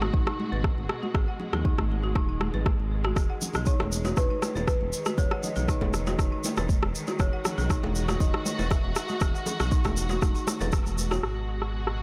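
Afro house at 119 BPM in a straight 4/4, earthy and spiritual in mood, cut from a longer piece and moving from G#m7 to Emaj7 and back. A deep, up-front electronic kick and a layered, tape-tinged electronic rim click with a filtered snare anchor the groove, both in a small room, while soft-handed congas sit in the background. A smooth, mellow sawtooth-and-triangle synth bass and a dark, lush bowed string section holding sustained chords both pump against the kick. A woody, rustic folk marimba played with medium hard mallets spins bright, airy arpeggios through digital delay. From about 3.2 seconds a grainy egg shaker joins, and a ringing, hollow-bodied kalimba adds a short delayed melody between roughly 3.7 and 9.4 seconds, with tight, high-tuned bongos entering just after it, before the band hits an accent at 10.7 seconds.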